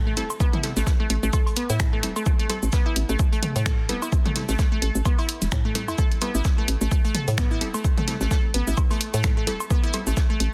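A swung 129 BPM 4/4 groove in A minor drives this cool, quirky minimal techno excerpt, where an overdriven electronic kick sits up front beside a hollow, knocking FM bass with sidechain pumping, a juicy, squelchy resonant blip pluck riff with chorus and tape echo, crisp wavetable chord stabs in the background, a punchy analog drum machine of cabasa, finger snaps and hi-hat, a very quiet dry soul kit of hi-hat, shaker and fat snare, and echoing electronic woodblock and toms, all in a dense, heavily limited mix with little reverb.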